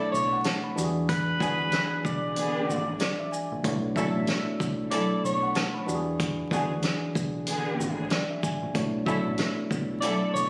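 Moody and dark, this swung boom-bap hip-hop fragment, cut from a longer piece, sets a whispered, breathy tenor saxophone melody with subtone, vibrato and delay over a worn, slightly out-of-tune tine electric piano heard through a combo amp, woody sul tasto string stabs with their own delay, a round, punchy fingered dub bass, and a soul drum kit of kick, fat snare, hi-hat and shaker with a rolled-off top, as the harmony moves between Bm11 and E9 beneath vinyl crackle, light reverb and the sound of a phone recording in the room.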